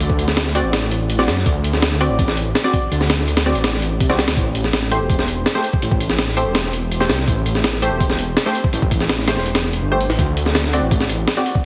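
Raw and atmospheric, this short cut from a longer drum and bass track leans into a jungle feel with a straight 4/4 pulse. A sampler-style breakbeat kit runs from the start, its gritty, compressed hits built on a thumpy kick, a high-tuned snare and hi-hat, re-recorded in a small room and placed up front. Beneath it, a detuned saw bass sits equally forward, thick and menacing, with a beating, saturated tone and a fast attack that sustains through the low register. From 0.5 seconds a filtered dub chord stab enters, muted and deep, its plucked, decaying hits softened by subtle chorus, cassette tape coloring and dub echo. The harmony moves from D7 to Am7 at 4.4 seconds and back to D7 at 10.2 seconds, while light reverb and heavy multiband compression give the whole mix a squashed, radio-like sheen.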